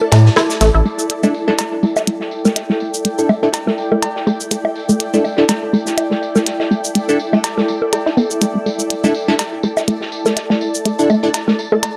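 A squelchy, detuned sawtooth pluck carries the riff up front through chorus, phaser, tape grit and analog delay, while crisp digital chord stabs with a moving notch arrive at 1.2 seconds in this quirky, cool minimal techno cut from a longer piece. A round, deep analog bass with tube saturation sounds only briefly at the start, and a clicky electronic kit of cabasa, hi-hat and rim click drives the swung groove alongside tape-toned bongos and cowbell and a soft, rolled-off acoustic kit with hi-hat, snare and tambourine. Underneath, a cloudy, evolving granular pad drifts in its own reverb, all captured in a dry, gritty hardware recording with light reverb.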